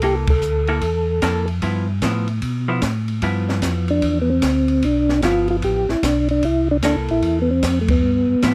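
Soul jazz organ trio music with a greasy, bluesy mood, swinging in four, cut from a longer piece. A soft, flute-like tonewheel organ with a percussive edge carries the melody up front, drops out at 1.5 seconds and returns at 3.9 seconds, its tone shaded by chorus vibrato and a slow rotary speaker. A second organ voice, round and mellow, holds the bass line up front with the same vibrato and slow rotary treatment. A dark, clean, picked hollow-body electric guitar comps quietly underneath, sounding compressed, while an acoustic drum kit with dusky cymbals, a high-tuned snare and a boomy kick plays hi-hat, ride, snare and kick throughout. The band hits accents together near the start and end over a simple C13 to G13 harmony, and the dry, close 1970s-style studio sound carries light reverb.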